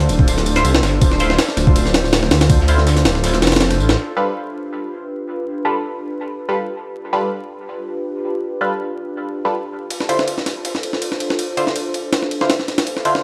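Nostalgic and dark, this excerpt of drum and bass jungle at 162 BPM opens on a drop where a thick, menacing detuned saw bass and a gritty, pitched-up jungle sampler-style kit with a thumpy kick drive hard over a crunchy breakbeat kit tucked in the background, while a warbling lo-fi pad holds sustained Dm7 and G7 chords through a filter sweep, a nasal band-passed chord stab with phaser and dub echo cuts through up front, the bass and breakbeat drop out at 4.0 seconds, and the sampler kit returns at 9.9 seconds, all under vinyl crackle.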